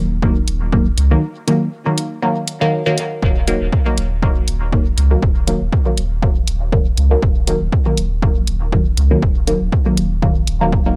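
A muted, detuned chord stab sits up front in this hazy, hypnotic dub techno piece, its sawtooth and square-wave tones plucked through a filter with a fast attack and short decay, coloured by phaser and trailed by dub echo as it pumps under sidechain compression. Beneath it, a round analog bass built from triangle and sine tones holds deep, dark, sustained notes, thickened by tube saturation and pumping with sidechain compression of its own. A punchy, overdriven electronic kick drives the groove from the front of the mix, while a layered, overdriven hi-hat ticks along more quietly, the rhythm carrying a light swing on the sixteenths. A break runs from 1.2 to 3.2 seconds, and from 3.2 seconds a filter sweep works through the stab over a steady E-flat minor chord. The sound is dry and gritty with a digital ambience, and the track is cut from a longer piece.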